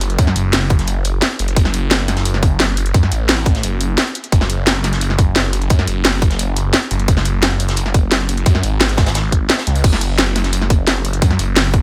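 Driving straight 4/4 at 174 BPM, this tense, dark technical drum and bass excerpt in F# minor pairs an up-front overdriven electronic kick entering at 0.2 seconds with a cracking-snare, bright-hat drum and bass kit and a very quiet, gritty, rolled-off breakbeat kit layered underneath, while a thick, swirling detuned saw bass with phaser and overdrive sustains from F#1 to F#2, all in a dry, close sound.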